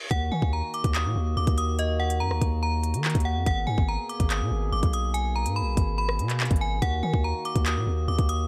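Drill hip hop at 143 BPM in a half-time feel, cold and dark in Eb harmonic minor, this excerpt sets a metallic, inharmonic FM bell melody ringing through chorus and digital delay over reedy, breathing pedal harmonium chords in a boxy small room, a deep, sine-like 808-style bass with long decaying notes, and an up-front electronic drill kit of hard-clipped kick, crisp hi-hats, handclaps and rim clicks, moving from Ebm to Abmadd9 at 3.5 seconds and back to Ebm at 6.8 seconds within a dark digital ambience.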